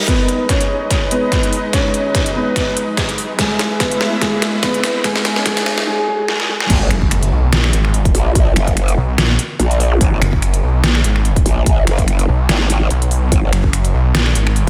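A swung, half-time 145 BPM groove in G# minor drives this aggressive, heavy wobble dubstep excerpt, where a punchy electronic kick and a tape-warm dubstep kit of deep snare, crisp hats, finger snaps and crash cymbal build under a mellow, dark concert grand piano melody, a lush sidechain-pumped supersaw pad with a filter sweep, and very quiet reverse cymbal, riser, impact and zap effects, until the drop at 6.7 seconds unleashes an up-front wobbling, chorused growl bass and a snarling, distorted saw bass, all set in a dreamy, reverb-soaked hall.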